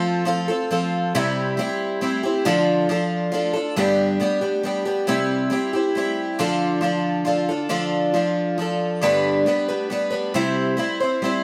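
A straight 3/4 pulse at 137 BPM carries this dusty, reflective rock excerpt in D dorian, where a lone picked twelve-string acoustic guitar, bright and shimmering with octave-doubled strings and sitting up front in a moderate studio reverb, moves through F, C and Dm before shifting at 3.8 seconds to a passage circling G, C and Dm, with the feel of a band playing live in one room.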